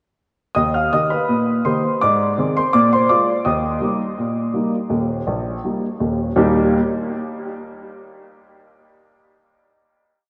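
Lively and playful, this short ragtime piece in Eb major moves at 83 BPM in a straight 2/4, with a solo upright piano playing the tune in octaves over a stride bass from 0.5 to 6.8 seconds. The woody, polished piano sits up front, touched with analog chorus and a diffuse ambient delay, and its Eb, Ab, Bb7 and Eb changes resolve onto a final chord at 6.4 seconds. A lush hall reverb soaks the mix in a dreamy haze with a soft, rounded top end.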